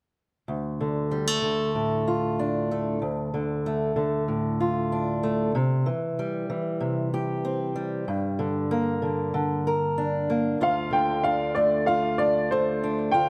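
A moderate concert hall reverb surrounds this short folk excerpt, with both instruments sitting up front in the space. In D minor at 95 BPM in a straight 4/4, the mood is stirring and yearning. A fingerpicked acoustic archtop guitar carries the accompaniment from 0.5 seconds, its warm tone marked by audible finger squeak as it moves through Dm, C and Gm. At 10.6 seconds a new section begins on Dm, and an upright piano enters with the melody, its woody, boxy voice sounding worn and slightly detuned. Guitar and piano then play together until the recording ends at 13.3 seconds, as it is cut from a longer piece.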